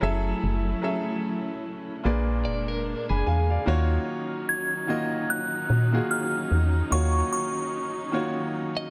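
Contemporary R&B at 74 BPM with a swung 16th feel, moody and longing, cut from a longer piece: a clear, vintage grand piano accompanies while softly bowed, intimate studio strings hold chords over Gbm7 and Bb7b9 before settling into Eb minor on Ebm9 at 3.7 s, a woody, round FM bass sits up front until 7.2 s, a picked clean electric guitar adds brief arpeggios with tremolo and delay from 2.5 s, and a glassy, crystalline synth bell carries the melody with chorus and delay from 4.5 s, all in a light reverb.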